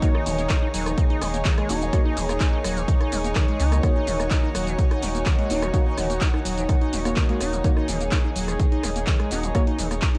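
Recorded at home onto cassette with light reverb and a digital ambience, this raw, hypnotic acid house excerpt moves at 126 BPM in Eb minor, resting on a single Ebm7 chord. An up-front, punchy electronic kick and an analog drum machine playing handclaps, hi-hat, rim click and shaker drive it, while a squelchy, hollow square-wave acid bass riff with overdrive, tape echo and a resonant filter sweep sits over a round sine sub bass that enters at 0.3 seconds with tube saturation and sidechain pumping. A thick, warbling, detuned sawtooth pad with chorus and pumping holds sustained chords beside an earthy bowed chamber string section with light vibrato, and a soft, full-bodied chord stab with tape echo stays in the background until 9.6 seconds.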